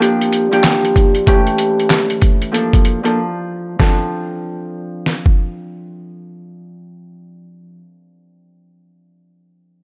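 A bright, ringing Celtic harp and a gritty, sampler-style boom-bap kit open this moody hip-hop excerpt together at 95 BPM in D minor, the harp's thumb-plucked accompaniment moving through Gm7, A7 and Bbmaj7 before settling on Dm7 after a short break. The pitched-down, compressed drums sit up front with a thumpy kick, a medium-tuned snare, hi-hat and handclaps, all pushed by overdrive and a loose 16th-note swing. The drums drop out at 5.4 seconds, leaving the harp, softened by a cassette-tape haze and filtering, to ring alone in light reverb until 7.8 seconds.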